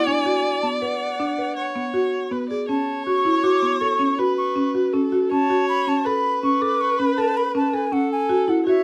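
A buzzing, woody marimba struck with medium hard mallets sits up front with dry arpeggios, joined from the first moment by an airy wooden flute carrying the tongued, vibrato-touched melody and a rich, focused viola with a smooth top bowing the second line beneath it. This urgent, hypnotic piece of contemporary chamber music moves at 160 BPM in an uneven 7/4 with a straight feel, shifting from Bm to F#m/B at 2.7 seconds. Light reverb frames a dark, warm production in this short cut from a longer work.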